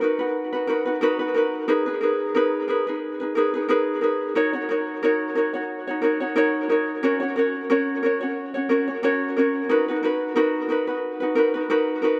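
A lone fingerpicked ukulele opens the excerpt, its acoustic tone light and up front, carried by a tape echo and a moderate plate reverb that leave the mix awash in repeats. This carefree, heartfelt pop excerpt moves at 90 BPM in 4/4 with a gentle swing on the sixteenths, its chords drifting from Bmaj7 through G#madd9, D#m7 and F# before settling back on Bmaj7 at 9.7 seconds. The ukulele plays alone throughout the 12.2-second fragment, cut from a longer piece.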